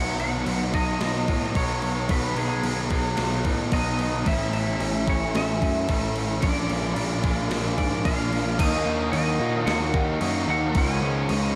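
A gated 80s drum machine sits up front in this blissful, dreamy shoegaze and dream pop excerpt at 111 BPM in B mixolydian, its thumpy kick and overdriven, gated-reverb snare re-recorded in a large room, while a growly fuzz bass and a biting overdriven riff guitar with reverse reverb drive alongside a thick fuzz guitar tucked in the background. Over them, a twangy, slightly broken-up lead guitar through a small old amp carries the melody with analog chorus and delay, and at 4.9 s a warbling, nostalgic tape-like pad joins with detuned, lo-fi sustained chords. Everything is soaked in a huge ambient reverb as the harmony moves from B6 through Amaj7 and A#7 to D#m and C#.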